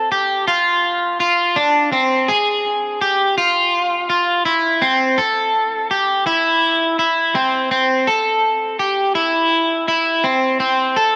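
Dream pop with a dreamy, ethereal mood, this short piece, cut from a longer work, features a lone electric guitar playing from 0.0 to 11.2 s. Sitting just at the edge of break-up, the guitar has a bright, twangy, picked tone that sits up front in the mix. Analog chorus and tape echo color its sound, lending a shimmering, hazy quality to the line as it moves between C4 and A4. A moderate plate reverb with a long 3.9-second decay surrounds the instrument, giving it a spacious, floating sense of depth. The overall production is dark and warm, which softens the guitar's brightness into a gentle, nocturnal haze.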